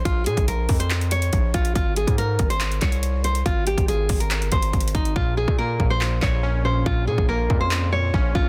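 A dense, heavily limited modern mix in a digital ambience carries this melancholic, menacing half-time trap excerpt at 141 BPM in Bb minor, moving from Bb minor to Ab and back. A dark, full-bodied fingerpicked nylon-string guitar leads up front with tape echo and audible finger squeak, over an aggressive, heavy distorted 808-style bass and an electronic trap kit of hard-clipped kick, handclaps and metallic hi-hats. At 5.2 seconds the hats drop out as airy, detuned keys with a filter sweep and chorus enter beneath.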